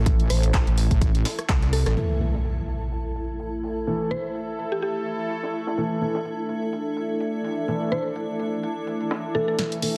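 A heavy, saturated wobble bass and a blurred, cloudy granular pad open this swaggering, gritty bass house excerpt at 126 BPM with a swung feel, while a punchy electronic kick, a house kit of handclaps, rim clicks and bright hats, a pitched-up breakbeat-style kit sitting in the background, dark piano stabs with tape echo and a woody, round mallet-like synth pluck all join in until a sweeping, airy resonant pad and an electronic impact arrive at 2.0 seconds, filter sweeps move through the piano and pad, and a drum fill with a riser closes things at 9.6 seconds in a dense, heavily limited mix.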